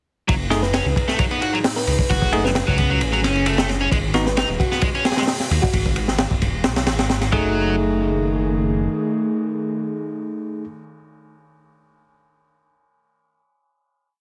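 A crunchy, looped breakbeat with edits drives this gritty, swaggering breaks piece at 132 BPM in straight 4/4 and F# dorian, its punchy kick and high-tuned snare up front, as a rumbling detuned saw bass plays a dub-style line and a biting overdriven guitar with tube saturation and tape echo repeats a 32-step riff. A bell-like tine electric piano drops sparse, echoing rootless stabs over F#m69 and G#m7, while a round, thumb-piano-like FM pluck with an AM radio colour adds short phrases in the background, all within a small room and a heavily compressed, radio-like mix. Beneath them, a warbling, nostalgic pad holds lo-fi chords with sampler grit and sidechain pumping, and after the bass stops at 8.9 s only the pad and the piano carry the final hit through to 10.6 s.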